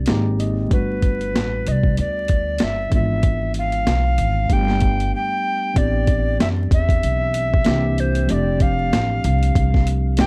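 Jazz-hop in G major at 95 BPM with a swung 16th-note feel, its cool mood framed by a dark production with light reverb and vinyl crackle. A worn, slightly out-of-tune tine electric piano heard through its built-in speakers opens with a fill over woody pizzicato upright bass on gut strings, and a gritty, compressed boom bap kit with a thumpy kick and high-tuned snare joins at 0.1 seconds, sitting up front like the bass. At 0.7 seconds an airy, close-miked tenor recorder takes the melody with a tongued, chiff-flecked straight tone through tape echo, and after a break at 5.1 seconds the harmony moves to Am11 for the second section.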